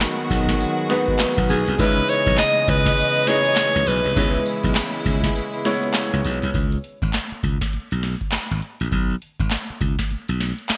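A booming analog drum machine drives this slick, punchy new jack swing cut at 101 BPM in C# minor, its deep kick, crisp snare, metallic hats, handclaps and tambourine swung on the 16ths under a growly slap bass, while a clear grand piano with lush chorus and a reedy string section carry the G#m7 to C#m9 chords, a breathy, edgy alto saxophone sings scooped notes from 1.5 to 4.5 seconds, the kick drops out at 5.4 seconds, and drums and bass carry on alone after 6.6 seconds, all bathed in plate reverb and bright 1980s-style digital production.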